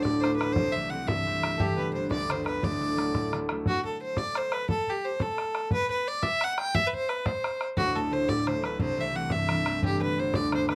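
A rich, nasal fiddle with light vibrato carries the rollicking melody of this lively Celtic jig in 6/8, up front beside a bright, ringing fingerpicked concert harp and a damped, tight, vintage-sounding bodhran, all in light reverb, in a short cut from a longer piece where the chords drop out at 3.7 seconds before returning at 7.8 seconds.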